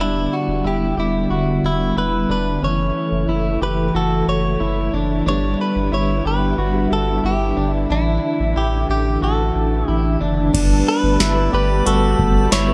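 Haunting and melancholic, this dream pop excerpt, cut from a longer piece, moves at an unhurried straight pulse under a dark, warm production with light reverb. A clean, direct-recorded electric guitar carries the melody with a bright, compressed tone and delay, while a second electric guitar at the edge of break-up picks twangy arpeggios through subtle chorus and delay. Beneath them, a mellow, vintage organ-string ensemble holds sustained chords with a soft attack and ensemble chorus, and a saturated sine sub bass sits thick and up front. The harmony drifts from Em7 through F#m7 and Em7/G to Asus4 before opening onto Gmaj9 at 10.5 seconds, where a booming analog drum machine enters with a deep kick, crisp snare, metallic hats, tambourine and crash, tape-toned and re-recorded in a large room. A faint, glassy harmonics texture with drifting overtones, chorus and delay glimmers in the background from 11.2 to 12.4 seconds.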